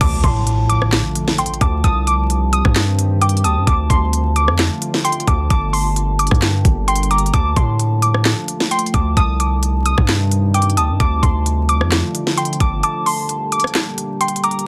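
A warbly, dusty pluck carries the melody in this brooding, melancholic half-time trap cut at 131 BPM in D phrygian, its lo-fi detuned tone smeared by chorus and digital delay, with a soft, pure FM bell tracing a second line beneath it. A deep, dark ambient pad holds sustained chords from 0.7 seconds while an up-front trap kit with a knocking kick, sharp soft-clipped snare, crisp hats, handclaps and rim clicks drives alongside a heavy, aggressive distorted 808 bass that drops out at 12.8 seconds for a closing break. An electronic impact opens the piece over chords moving between Dm, Cm and Gm, all within a dense, heavily limited master dusted with vinyl crackle.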